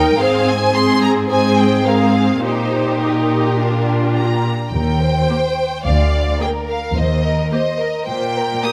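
Close, detailed microphones capture a string orchestra on a scoring stage, with a moderate reverb tail giving the bowed sections a sense of space. This short cut from a quick classical-period movement in straight 4/4 feels urgent and dramatic from its first bar. A lush first violin section carries the melody with expressive vibrato and a soft attack, while a second violin line sits beneath it with a smooth top. The viola section, focused and clear, supplies the accompaniment a touch more prominently, and an even, up-front cello section holds the bass with light vibrato. At 4.7 s the double basses join the low end with a rich, focused tone, adding weight until 7.4 s as the harmony settles back onto Eb.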